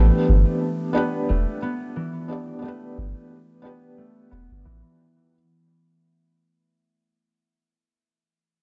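A lightly swung sixteenth-note trip hop groove carries this melancholic, smoky fragment: a round, sine-like 808-style bass sits up front under a filter sweep, a felt-muted upright piano with audible action noise, tremolo and tape echo plays intimate accompaniment until 5.4 seconds, and a ringing, fingerpicked concert harp spins low-pass filtered, delayed arpeggios through to 7.4 seconds, inside a dark, dry mix that fades out over its first 5.3 seconds.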